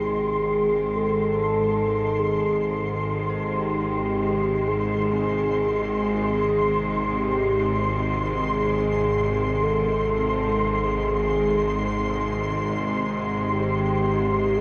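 Soaked in a huge, dreamy reverb, this dark, ominous ambient drone fragment sets a mellow, horn-like synth lead with chorus and cassette-tape echo over an up-front, tense, bowed-like drone, a flickering grainy texture and a distant, focused cello section fading in on sustained chords, while an eerie, warbling FM bell adds very quiet arpeggios from 3.3 seconds.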